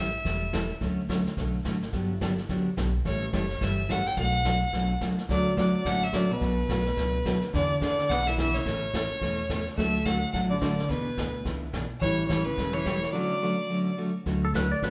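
A bright, full-bodied picked acoustic guitar, a woody, growly upright bass and a clear, focused fiddle open this cheerful, playful western swing excerpt in D major at 214 BPM, with a vintage brush kit of snare, hi-hat and tight kick joining at 0.2 seconds. The up-front fiddle, bowed with light vibrato, carries the swinging melody, while a dark, clean hollow-body jazz guitar adds a second line from 5.3 seconds over seventh and major-seventh chords. A twangy, compressed lap steel with slide and volume swells steps forward at 14.4 seconds, and the band plays live in one room, bathed in a wet, large studio reverb.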